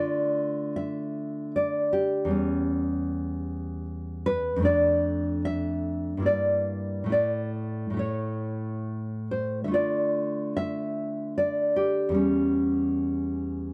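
A bright, freshly strung nylon-string guitar, thumb-plucked and up front, carries this intimate, wistful romantic solo in 3/4 with a free rubato feel, moving from a minor chord through diminished shadings to a major chord at 7.1 seconds before settling back, all in a dry, close 1970s-style studio sound with light reverb.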